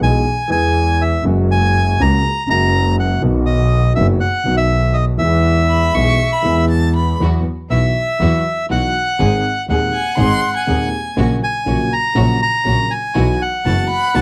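Nostalgic and passionate, this tango moves with a rubato feel in 4/4, and it is cut from a longer piece. A reedy, bright bandoneon sits up front carrying the melody, while a grand piano with a smooth, vintage color supplies the accompaniment and a single bowed double bass, clear yet distant, holds the bass line with even vibrato. At 5.7 seconds a solo violin joins on a second line, close and expressive, its soft attack and portamento giving it a singing quality. From 7.2 seconds a lush studio string section adds bowed stabs from the background, its vibrato and glides rounding out the harmony. The harmony moves from E through F#add9 and B before the repeated phrase shifts to Esus2, G#, F#/A# and a closing Bsus4. Close, detailed microphones and light reverb keep the ensemble intimate.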